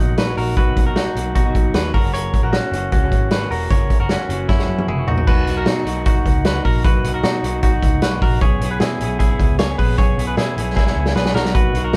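A lo-fi, slightly broken-up guitar through a small old amp plays picked chords over a round, foam-muted bass, while a bright, twangy clean guitar picks arpeggios above, and a vintage drum kit enters at 0.2 seconds, setting a youthful, nostalgic indie pop excerpt at 153 BPM in B major. The drums sit up front with a punchy kick, medium-tuned snare and dark, rolled-off cymbals, and drum fills at 4.5 and 10.8 seconds lead the band from a Bmaj7 and F#7 opening into a section that moves through C#m7. The whole band sounds as if it is playing live together in one room with light reverb.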